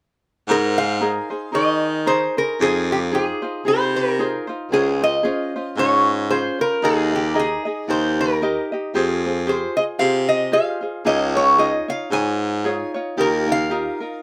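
A gently swung 4/4 lilt carries this languid, relaxed Hawaiian passage, drawn from a longer piece and moving through mellow chords such as Abadd9, Fm7 and Dbmaj7. Up front, a lap resonator guitar sings the melody with a metallic, nasal slide tone played with fingerpicks, while a light, fingerpicked ukulele adds bright accompaniment. The bright baritone saxophone takes the bass line in a jazz style with a light vibrato until 13.9 seconds, and the guitar and ukulele ring on to 14.2 seconds, all captured closely in detail with a touch of reverb.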